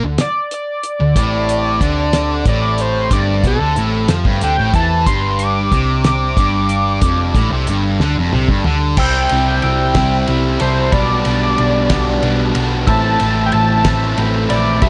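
A bright, double-tracked fuzz guitar riff opens this excerpt from an indie rock piece in A minor, with a round, hollow-body electric bass beneath it. A screaming, sawtooth-edged synth lead, gritty and detuned with chorus, vibrato and a slapback echo, carries the melody as a solo over a dry, dark-toned drum kit with a fat snare, a tight kick and dark cymbals. At 1.2 seconds a lightly overdriven tonewheel organ enters in the background, holding sustained chords through a slow rotary speaker as the harmony moves from Am7 to G5. The tempo sits at 61 beats per minute in a straight 6/8, and a drum fill from 8.0 seconds leads into a new section. There, at 9.0 seconds, a mellow, bell-like glockenspiel played with rubber mallets adds a soft second line as the chords pass through C, G/B and back to Am, lending the restless drive a bittersweet glow under light reverb.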